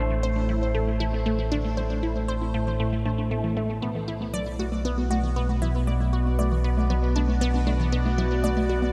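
A dreamy, reverb-soaked mix in a lush hall sets an expansive, hypnotic mood in this short stretch of ambient, sequencer-driven space music at 117 BPM in 4/4, cut from a longer piece and moving from Am to Bm at 3.8 seconds. Up front, a morphing, vintage wavetable pad holds sustained chords with chorus and its own reverb, while a deep, round sub bass anchors the low end. A juicy, squelchy blip pluck with phaser and tape echo plays a bright riff, and a lo-fi, detuned pluck with chorus and tape echo sits in the background with arpeggios that fade in across the whole 8.9 seconds.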